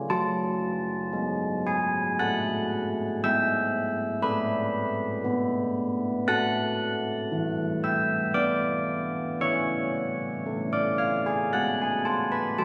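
Mellow, bronze carillon bells with a padded clapper and a minor-third overtone ring out soft and up front from 0.0 to 12.6 s in this solemn, wintry classical bell tune in F# minor at 58 BPM in a straight 3/4, tuned to A4 = 438 Hz, moving through F#m, E/G#, A5, Bm and C# across a range of E3 to F#6, captured on a phone in the room and bathed in a wet church reverb with a long 3.4-second decay plus club reverb and compression, as a fragment cut from a longer piece.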